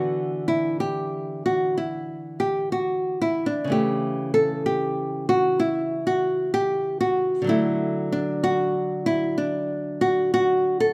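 A rubato 4/4 pulse around 63 BPM carries this flowing, serene fragment of a baroque-style classical dance in D major, where a solo fingerpicked nylon-string guitar with a small, up-front acoustic tone moves from E5/D through A/C# to D in a recital hall's moderate reverb over 10.9 seconds.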